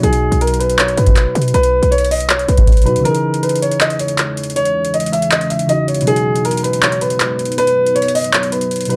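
This wistful, dreamy trap excerpt opens with a dark, mellow baby grand piano carrying the melody up front, its notes trailed by delay, over soft, round electric-piano-like synth keys shimmering with chorus. A booming analog drum machine drives the half-time feel at 159 BPM in B major, with a deep kick, metallic hi-hats and handclaps carrying a tape-warm edge. A punchy, tight 808-style bass with a sine body and a noise layer sounds only through the opening three seconds, stopping just before the break begins at 3.1 seconds. At 4.1 seconds a deep, moody ambient pad of detuned sawtooth unison and a sine sub octave fades in slowly, bathed in chorus and its own reverb. The harmony moves from B to C#madd9 and back to B, and the kick drops out from 8.3 seconds. A moderate digital room ambience wraps the dark production.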